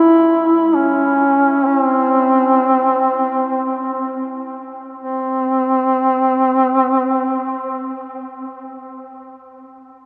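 A solo duduk opens this solemn Caucasian folk lament in free time, sitting up front with a warm, vintage tone, soft attacks, scooped notes and vibrato, moving between C4 and E4 and slowing down over the first 5.0 seconds. A huge, wet ambient reverb with a 7.5-second decay places the instrument in a vast, echoing space, deepening the sense of longing. A new passage begins at 5.0 seconds, and the duduk stops at 8.0 seconds, shortly before this brief excerpt ends.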